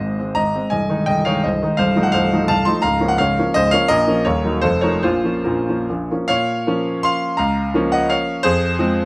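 Capricious and nostalgic, this short cut from a longer romantic classical piece is a triple-time dance in Bb minor for solo grand piano, moving with rubato between 135 and 186 BPM in dotted rhythms, its clear, present, up-front tone spanning C1 to C6 in light reverb as the harmony passes through Ab, F7 and Ebm before shifting to a new section at 6.3 seconds that settles on Fm by 8.4 seconds.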